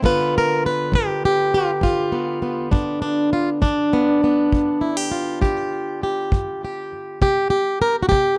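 A dry, close studio sound with a 1970s character and a touch of studio reverb frames this short cut from a longer acoustic country blues piece, soulful and swaggering at 67 BPM in 12/8 in G mixolydian. Up front, a boxy, fingerpicked, plugged-in acoustic guitar carries the swing-style melody from G2 to B4 with a tape echo on its tone. Beneath it, a punchy, airy kick drum played with brushes sits a little lower in the mix, as the harmony rests on G7 before moving to C5 at 7.2 seconds.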